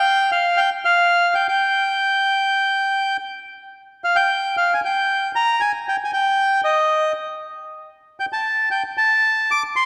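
Steeped in the long, wet reverb of a concert hall, this short fragment of a longer tango sets a lone bandoneon up front, its reedy, dark tone carrying a melancholic and passionate mood. Playing freely in rubato over a 4/4 pulse, the bandoneon sings high in its register, from Eb5 to D6, with a smooth line that fills the whole 9.9 seconds.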